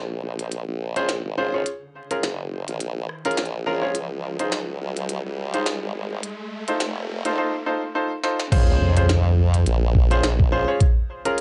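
Gritty and swaggering, this glitch hop excerpt rides a swung 4/4 groove cut from a longer piece. A wobbling formant-sweep bass, built from sawtooth and sine tones with chorus and tube saturation, sits up front from the start, while a glitchy electronic drum kit with a tiny snare, clicky hats, rim clicks and crash cymbal sounds as if re-recorded in a large room. A clear, worn grand piano plays short stabs with sidechain pumping and dub echo, moving through minor ninth, major ninth and dominant seventh colours. An electronic riser climbs through the build-up before a drum fill at 8.2 seconds leads into the drop at 8.5 seconds, where an impact lands and a compressed, pitched-down, thumpy kick enters with a tape-warm, small-room character. Light reverb and vinyl crackle give the whole mix a dusty, lo-fi sheen.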